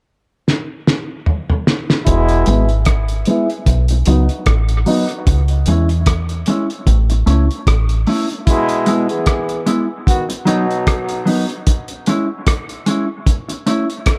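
Spacious and hazy, this dub reggae excerpt at 75 BPM in E major opens with a drum fill on a cloth-damped, thuddy kit with a fat snare, then brings in a deep, round fingered electric bass, a mellow guitar dark beneath a low-pass filter and dub echo, brief boxy grand piano stabs, and a clear trombone section echoing in bursts, all drifting over an E, B, C#m, A progression beneath a filter sweep that runs from 2.1 seconds onward.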